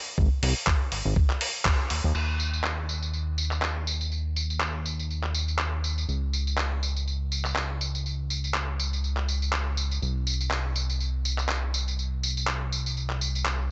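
Dry and gritty, with a light reverb and nothing above 7.9 kHz, this sunny, groovy nu-disco excerpt at 122 BPM in 4/4, swung on the sixteenths and tuned to A4 = 436 Hz, rides on a fat, tube-saturated analog bass with sidechain pumping, detuned sawtooth and ring-modulated tones and a filter sweep, while a thumpy electronic kick sits up front until 1.8 s and the band hits an accent at 1.7 s, and from 0.4 s a compressed, tape-warm soul sampler kit of crash cymbal, handclaps, hi-hat and tambourine, low-pass filtered and re-recorded in a large room, carries the groove.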